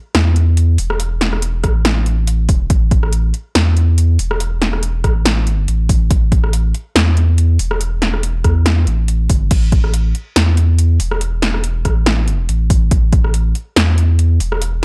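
A half-time pulse at 141 BPM, with lightly swung sixteenths, drives this dark, meditative deep dubstep fragment, cut from a longer piece and tuned to A4 = 441 Hz. A thick, triangle-toned saturated sub bass holds the low end from E1 to E2 with sustained, fast-attack notes, while an overdriven drum kit sets a punchy snare, metallic hi-hats, rim clicks and crash cymbal up front with a large-room character. A deep, overdriven electronic kick enters at 1.6 seconds and drops out at 13.2 seconds, all within a dry, close mix.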